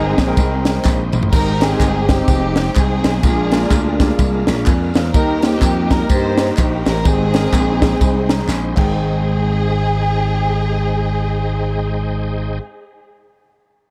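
This is an excerpt of uptempo gospel in Ab major, moving at 126 BPM in 4/4 with a swung eighth-note feel and a reverent, hopeful mood over a harmony of Abmaj7, Bb7 and Eb. A lush, bowed string section carries the melody from a distance, its expressive vibrato and portamento trailed by analog delay. Beneath it, an intimate grand piano sits in the background with audible action noise and long sustain, while a shouting tonewheel organ holds full chords through a slow rotary speaker and chorus vibrato. Up front, a punchy, amped slap bass anchors the low end, joined from 0.2 seconds by a dry funk kit with a high-tuned snare and bright cymbals, plus vintage, band-limited tambourine and group handclaps. The piano plays a fill at 8.0 seconds, the drums drop out at 8.9 seconds, and the mix stays echo-heavy with light reverb and a sense of studio ambience.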